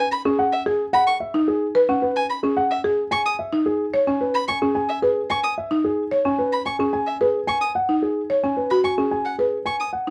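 A straight 4/4 pulse at 110 BPM drives this urgent yet meditative fragment of minimalist classical pattern music in C# minor, where an intimate concert grand piano carries the melody with audible action noise and long sustain, a dark solo violin bows high arpeggios with vibrato, and a buzzing marimba with medium hard mallets on hardwood bars enters at 0.3 s with dry, boxy arpeggios, all three up front in a light reverb as the harmony moves from Eadd9 through C#7(no3) to G#m7.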